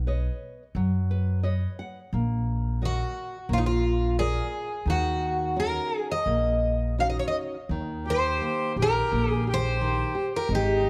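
A picked twelve-string acoustic guitar carries the melody from 2.9 seconds, its shimmering, octave-doubled tone sitting up front with a touch of analog delay in this mournful, longing fado-style ballad. Beneath it, a fingerpicked nylon-string guitar with fresh strings and a deep classical body supplies the accompaniment from the start, adding a brief fill between 0.8 and 2.1 seconds. A woody, dark upright bass, played pizzicato and also placed up front, anchors the harmony throughout. The piece moves at 87 BPM in 4/4 with a loose, rubato feel, beginning in Eb minor and brightening to Eb major at 7.7 seconds. A reedy accordion with a dry tuning joins at 8.1 seconds as a second line, and the whole passage, cut from a longer piece, is captured with close, detailed microphones in light reverb.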